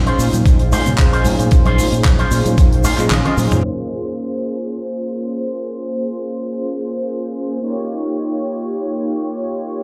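The recording sounds like it is played on a big sound system in a bare room, with stone-room reverb, a low-pass filter and a light small-room ambience giving it a muffled, cavernous cast. This cosmic, sensual nu-disco fragment moves at 113 BPM in a straight 4/4 in Bb dorian, drifting from Dbmaj7/Bb to Bbm7 and then Eb7/Bb. Up front, a dark, round synth brass with detuned sawtooth and triangle tones holds sustained chords under chorus, sidechain pumping and dub echo, and its filter sweeps evolve across the whole piece. In the opening stretch, a bright fingered bass with an envelope filter and a twangy, clean picked guitar riff with its own envelope filter, analog chorus and dub echo ride over a knocking, tape-warm electronic kick. Also in the opening stretch, a dry, mid-forward 70s kit adds handclaps, hi-hat, shaker and toms, while thin-skinned congas sit in the background. A drum fill closes that opening, and from 3.6 seconds the synth brass carries on alone until the cut at 9.8 seconds.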